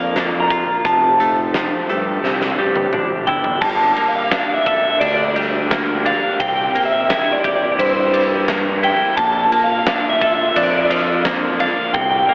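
Post-rock at 86 BPM in Bb lydian, cinematic and hopeful, this piece is cut from a longer work and moves from Bb through Fadd9 and Cadd9 into a build-up from 3.6 seconds over Gmadd9, C7 and Bbmaj7. An up-front, slightly broken-up electric guitar through a small old amp carries the twangy lo-fi melody with spring reverb, slapback echo and digital delay, while a clean, compressed twelve-string electric guitar picks bright arpeggios through its own delay and a growly fuzz bass adds overdriven weight beneath. A huge arena drum kit with a punchy kick, fat snare and bright cymbals plays a fill from 2.2 to 3.6 seconds, a very quiet, woody string section holds dark bowed chords with vibrato, and the whole sits in a lush hall reverb with a big arena sound touched by a telephone-like tint.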